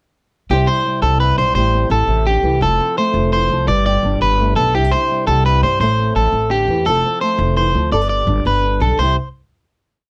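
A syncopated 12/8 highlife lilt at 113 BPM carries this short, sunny C major piece, where an up-front electric guitar at the edge of break-up picks a warm slapback-echoed arpeggio ostinato over fresh-stringed fingerpicked flamenco guitar and a woody, thumpy pizzicato upright bass, all cycling C, Am7, F and G in a dry, close 1970s-style studio sound before settling on a final C chord at 9.0 seconds.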